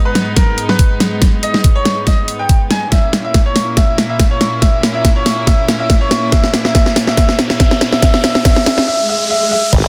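A dense, heavily limited mix with moderate plate reverb carries this menacing, aggressive excerpt of heavy wobble dubstep at 141 BPM in a swung half-time feel, where distant, reedy chamber strings pump on sustained G#m and A#dim chords, a brilliant, long-sustaining grand piano carries a delayed melody, an up-front drum kit with a huge snare and bright hats plays a build-up fill over a knocking electronic kick, an electronic riser and swell sit in the background from 5.2 s, and a saturated, formant-swept wobble bass bursts in at 9.7 s.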